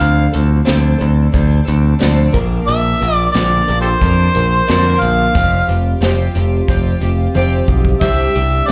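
An overdriven harmonica carries the melody up front, its gritty, amplified tone marked by light vibrato, tongue slaps and scooped notes, with plate reverb, slapback echo and digital delay trailing each phrase. This short cut from a longer folk rock and heartland rock piece moves at 90 BPM in a straight 4/4, its mood nostalgic yet hopeful. Beneath it, a picked twelve-string acoustic guitar shimmers with octave-doubled, fresh-string brightness, finger squeak, a lush chorus and an auditorium-like sense of space. A modern picked electric bass sits direct and up front with a bright edge, while an acoustic drum kit played with bundle sticks offers a punchy kick, medium-tuned snare, hi-hat and toms in an airy, polished small room, capped by a fill from 7.3 to 8.0 seconds. The chords move from Dm7 to Bb, then Fsus2, landing on Csus2 at 8.0 seconds, and the whole performance comes across as a live gig heard through the venue's PA with club reverb.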